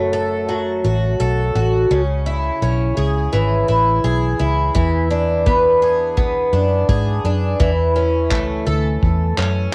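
A gently swung sixteenth-note lilt carries this reflective, wistful acoustic pop fragment, where a bright, shimmering twelve-string acoustic guitar sits up front under a lush chorus while a dark, round, foam-muted electric bass holds the low end, and at 4.8 seconds a tight, cassette-tinged kit of handclaps and kick drum joins, all within a small, intimate home-recorded room.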